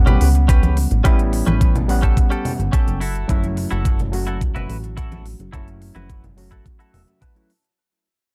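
A chorused, pulse-width-modulated synth bass with tube saturation and a barky, overdriven reed electric piano pump in this sunny, groovy 107 BPM nu-disco excerpt. Crisp electronic hi-hats, distant congas and a bright, twangy clean electric guitar riff through analog chorus and delay arrive almost at once, and a knocking, tape-warm electronic kick lands half a second in, all over A7 and F#m7, with a guitar fill at 6.7 seconds as the whole fades out.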